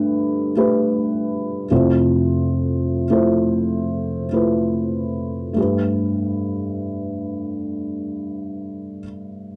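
In a straight 4/4 pulse, this short pop fragment eases and slows through its first 5.6 seconds before settling into a second passage. A felt-muted upright piano plays the accompaniment alone throughout, its soft, dark tone thickened by heavy felt and its action noise audible close up. The harmony moves from Gadd9 to Fmaj7 and returns to Gadd9 as the second section begins. The mood is emotional and heartfelt, with the boxy instrument sitting intimately up front. A light reverb and small-room ambience frame a dry, close sound that recalls a 1970s studio, and the clip is cut from a longer piece.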